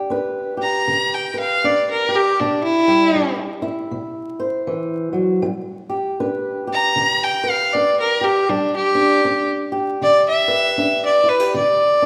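A boxy, fingerpicked acoustic guitar opens this laid-back, rollicking country blues excerpt in G major, swinging at 79 BPM over G and C chords. At 0.6 seconds a clear, earthy fiddle takes the lead with light vibrato and a smooth top, its bowed solo sitting up front above the guitar. A wet recital-hall reverb and vinyl crackle give the recording the feel of a performance in a church or concert hall.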